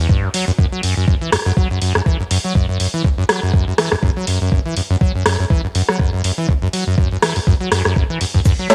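Lo-fi and cassette-recorded at home with a moderate spring reverb, this short, driving, trippy acid house cut from a longer piece swings its 16ths over a steady 4/4 metre. A squelchy, resonant sawtooth acid bass riff with tube saturation, lush chorus and sidechain pumping runs throughout, alongside a thumpy, tape-warm sampler-style kick and a dry, punchy analog drum machine playing crash, hi-hat and rim click. A soft natural shaker slips in at 8.5 seconds, and a hollow, dark, chorused organ stab lands up front at 8.7 seconds.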